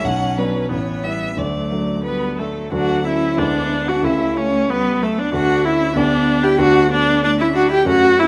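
Close, detailed microphones in a recital hall with moderate reverb capture this cheerful, spirited cut from a quick classical-period movement for piano quartet in D major, played in 2/4 at 87-97 BPM with a rubato feel. A distant solo violin carries the smooth, even melody with vibrato, while an up-front, clear viola plays accompaniment and a rich cello, set in the background, supplies a second line, both bowed with focused vibrato. A warm, polished baby grand piano with short sustain fills out the harmony, moving from Bm through A9 to D before a new section begins at 2.7 s.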